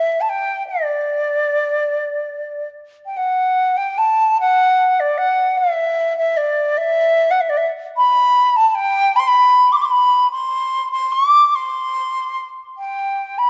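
Celtic folk in 6/8 with a tender, nostalgic mood, this short passage from a longer piece drifts at a rubato pace around 50 BPM in D mixolydian. A lone wooden flute plays throughout, ranging from D5 to D6 with an airy, woody tone, gentle vibrato and soft attacks, set up front in light reverb. After a brief opening phrase, a new section begins at 3.1 seconds and carries the melody on to 13.5 seconds.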